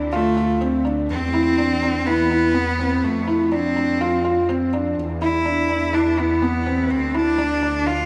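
This short cut from a longer piece opens with a felt-muted upright piano playing a riff, soft and intimate with audible action noise and a digital delay trailing its notes, over a dark detuned saw bass that rumbles with a beating, saturated tone. At 0.1 seconds a bright cello takes the melody, a single bowed player with vibrato and a biting, nasal edge, also carrying a digital delay and sitting up front beside the piano. The mood is cinematic and melancholic, a piano and strings electronica piece in D dorian at 124 BPM in a straight 4/4. The harmony moves from Dm7 through Cmaj7/E, F6 and E5 before returning to Dm7 near 6.9 seconds. A huge ambient reverb with a long tail surrounds the parts, giving the close, intense cello and the mellow piano a spacious setting.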